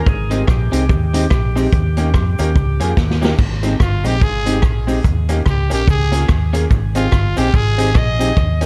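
This bouncy, joyful ska cut opens with an overdriven tonewheel organ carrying a short, gritty melody through a slow rotary speaker and tape echo, dropping out at 2.9 seconds. Almost at once a vintage drum kit with a punchy kick, rim clicks, hi-hat and crash joins a round, dark fingered electric bass, both sitting up front at a swung 145 BPM in Ab major. A very quiet, grainy cabasa sits beneath them, while a clean, twangy electric guitar with tape echo and a brilliant, slightly detuned upright piano with audible action noise fill in the background with accompaniment and stabs. After a drum fill, a growling, raspy trumpet takes a solo from 3.8 seconds, its light vibrato and tape echo riding over chords that cycle through Abmaj7, Eb7 and Db6. The small room ambience and dark production give the whole excerpt an intimate, vintage feel.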